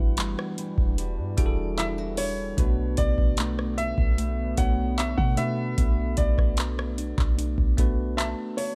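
Set in a digital ambience, this moody, longing contemporary R&B excerpt at 75 BPM in B minor moves from Em9 to Bm9 as an intimate baby grand piano carries the melody through tape echo over bell-like tine electric piano accompaniment, thumb-plucked nylon-string guitar arpeggios in the background, a very quiet detuned sawtooth ambient pad and a clean, boomy 808-style bass, while a booming analog drum machine sits up front with a deep kick, metallic hi-hats, handclaps and rim clicks from 0.2 seconds, and a soft, round pluck with chorus and tape echo joins at 1.4 seconds.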